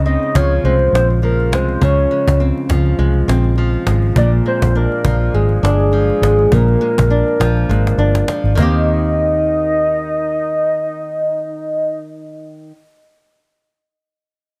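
Sunny and hazy, this bedroom-pop excerpt at 102 BPM in Eb mixolydian has a light sixteenth-note swing. Up front, a boxy, fingerpicked flamenco guitar shimmers with lush chorus and vibrato over a dark, foam-muted, punchy electric bass, while a soft octave-layered synth lead with a sine-and-triangle tone and a sub octave carries the melody with a fast attack, sustained notes and chorus. A close, woody cajon played with hard hands adds faint snares and a fill from 7.7 seconds before dropping out at 8.7 seconds, as the chords move from Dbmaj7 through Bb7 to Eb6 in a small, lightly reverberant room.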